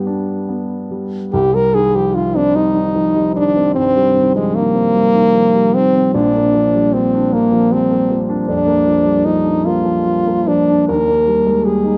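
Romantic classical music for French horn and grand piano, this excerpt from a longer work has a yearning, elegiac mood, unfolding in a slow, flexible 12/8 at roughly 47-54 BPM in C minor. The French horn carries the melody up front, its clear tone touched with light vibrato as it sings in a compact middle register. Beneath it, a dark baby grand piano provides the accompaniment, mellow and smooth with a vintage character and long, lingering sustain. After a brief opening on a G chord, the harmony settles into C minor at 1.3 seconds, then moves through Bb and reaches Eb near 10.9 seconds. Close, detailed microphones capture both instruments within a moderate scoring-stage reverb that gives the duo an intimate yet spacious presence.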